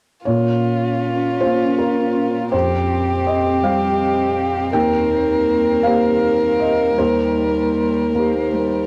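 A dark, woody solo violin sings a longing melody up front with vibrato and a sul tasto touch over a mellow felt-muted upright piano with audible action noise, alongside an intimate cello second line with an airy bow in the background, joined from 1.0 s by a very quiet cloudy granular pad of blurred sustained chords, in a reflective neoclassical excerpt in Bb dorian at a rubato 53 BPM in 6/8, with the strings and piano carrying cassette-tape colour in a small, lightly reverberant room.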